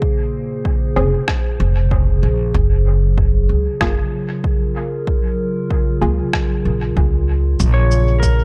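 A woody, thumpy upright bass sits up front from 1.0 s in this hazy, deep ambient dub excerpt at 95 BPM with a swung 16th feel, beneath a warbling, nostalgic tape-like pad holding chords from Bbm9 to Gbmaj9, a punchy electronic kick, muffled pitched-down rim click and cabasa with dub echo, muted sawtooth chord stabs with chorus and dub echo, and a bright, twangy pedal steel guitar arpeggio entering at 7.7 s in a light digital ambience.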